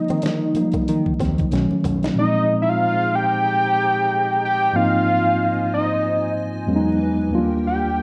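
A relaxed, soulful R&B and neo-soul groove at 93 BPM in 4/4 with a 16th-note swing, this excerpt opens with a gritty, pitched-down boom bap kit with a thumpy kick, a fat detuned analog bass, damped congas and a fingerpicked flamenco guitar with finger squeak sitting in the background, all of which drop out by the time a drum fill ends at 2.2 seconds. Throughout, a dark, warbling analog lead with chorus and vibrato carries the melody up front over a mellow, clean tine electric piano heard through its built-in speakers. From 2.2 seconds a hollow, flute-like pad with ensemble chorus adds soft sustained chords over changes such as Ebmaj7, Bb9sus4 and Ab6, all set in a moderate room reverb with the vinyl crackle of a rough home demo.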